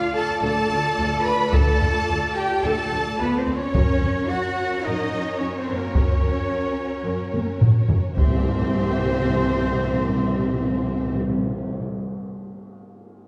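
Triumphant and heroic, this cinematic orchestral film-score passage at 108 BPM in a straight 4/4 is cut from a longer piece and moves from D minor through F# to a C chord at 8.2 seconds. A studio violin section carries the smooth, vibrato-laden melody in the background, while a crisp, pure silver concert flute and a very quiet symphonic violin section trace a second line above distant, lush violas. Mellow French horns and a focused, lush string section hold sustained chords, a classical-style trumpet adds stabs, and bowed cellos and a rich double bass section, entering at 0.4 seconds, anchor the bass. Up front, a taiko ensemble struck with heavy sticks drives the music from 1.5 seconds, capped by a drum fill that leads into a full band accent at 8.2 seconds, where hard-mallet timpani and a dark tam-tam join. The whole orchestra sits a little back in a wet scoring-stage reverb with a 1.8-second decay.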